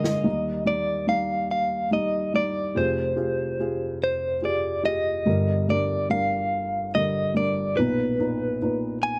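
A dry, close 1970s-style studio sound with a touch of light reverb frames this tender, nostalgic folk fragment in 6/8, moving slowly at 48 BPM in dotted quarters in Eb major. A bright, clean electric guitar, recorded direct and compressed, carries the picked melody up front with a tremolo effect. Beneath it, a felt-muted upright piano adds mellow, boxy, intimate accompaniment with audible action noise, both parts playing throughout the 9.2 seconds as the harmony moves from Ebmaj7 through Fmadd9 and Gm to Bmaj7.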